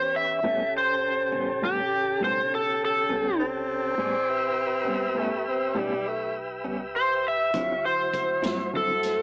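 Slow blues with a swaggering, gritty mood, where an up-front overdriven slide guitar carries the melody over smooth tonewheel organ chords turning through a slow rotary speaker, a clean, compressed electric guitar with tremolo, and a woody, thumpy upright bass in the background, while a soft-attack tenor saxophone with vibrato adds a second line from 3.4 to 6.4 seconds and a vintage drum kit with a punchy kick enters at 7.5 seconds, all heard through a light-reverb home cassette recording with small-speaker sound.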